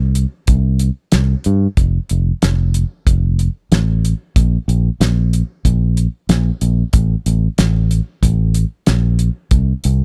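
Folk rock and heartland rock at 93 BPM in a straight 4/4, this short excerpt carries a nostalgic, hopeful mood in a dry, close 1970s-style studio sound. A fingered electric bass, dark and round and up front, opens at 0.0 s in a low register. A cloth-damped, thuddy drum kit joins at 0.2 s with hi-hat, a tight kick and a fat snare, its small-room tone saturated and gritty with a rolled-off top.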